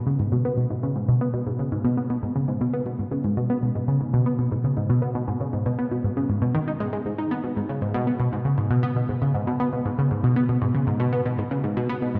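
Ambient, mysterious and hypnotic at 118 BPM in G# minor, this short cut from a longer piece features a lone tight sequenced synth, detuned sawtooth with a mellow filter pluck, sitting up front from 0.1 to 12.2 seconds, its driving line coloured by chorus, phaser and delay and bathed in the long wet reverb of a concert hall within a dark production.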